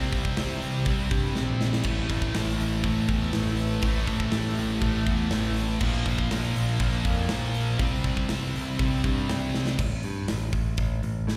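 Heavy and epic, this heavy metal passage cut from a longer piece drives a straight 4/4 riff through three distorted, picked electric guitars (one compressed with slapback echo, a double-tracked high-gain one, and a scooped high-gain one set farther back) over a punchy, up-front electric bass and a tight, polished drum kit with bright cymbals and fills at 1.4 and 9.5 seconds, while a very quiet, swirling, detuned analog pad with phaser and chorus hovers beneath until the guitars and pad drop out at 9.8 seconds, leaving bass and drums, the band heard as a live gig through the venue's PA with recital hall reverb.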